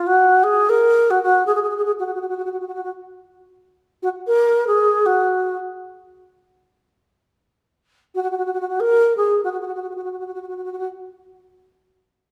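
Calypso in F# major at 117 BPM with a light sixteenth-note swing, this bouncy, festive fragment from a longer piece features a solo alto flute, airy and mellow with vibrato and tongued notes, moving between F#4 and A#4 from 0.0 to 10.9 seconds, sounding both distant and up front within a recital hall's reverberant bloom.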